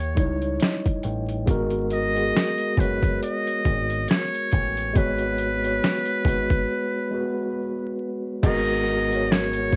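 Nostalgic and reflective, this lo-fi hip hop cut from a longer piece sits at a relaxed 69 BPM in G# minor, with a gentle swing on the sixteenths. A trumpet with a metal mute carries the jazz-style solo melody up front, its buzzy, breathy tone marked by light vibrato and scooped notes, softened by a low-pass filter and cassette tape coloring. A mellow tine electric piano enters at 0.2 seconds with a fill, its clean tone heard through built-in speakers, while a deep dub picked electric bass supplies a dark, round low end. The boom bap sampler-style drum kit is gritty and pitched down, with a thumpy kick, medium-tuned snare, hi-hat and crash cymbal pushed through overdrive and placed up front. The harmony moves from D#7b9 to G#m9, a break arrives at 6.7 seconds, and a new section begins at 8.4 seconds, all wrapped in light reverb, home-cassette grain and vinyl crackle.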